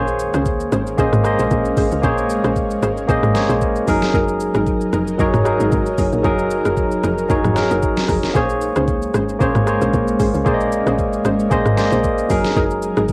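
Soulful, late-night amapiano at 114 BPM in Bb minor, where a barky tine electric piano sits up front over a tight, percussive log drum bass and a smooth R&B kit with a knocking kick, deep snare, rim click, shaker and toms, while an ethereal pumping pad with ensemble chorus and punchy detuned chord stabs with tape echo hover in the background, all moving between Bbm9 and Gb69 with a cassette-tape haze in a small booth.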